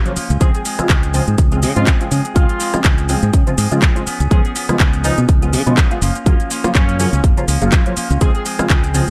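Dry and punchy, this joyful, funky filtered disco house excerpt moves at 123 BPM in Db major with a light 16th-note swing, cycling through Dbmaj7, Db7 and Gbmaj7 under sidechain pumping. An up-front, tape-tinged electronic kick and a house kit with metallic hats, handclaps, rim click and shaker drive a growly, bright fingered bass with tube saturation. A detuned sawtooth polysynth comp with chorus, phaser and a filter sweep, a twangy envelope-filtered guitar riff with spring reverb, and a smooth-topped horn section melody with light vibrato fill out the mix.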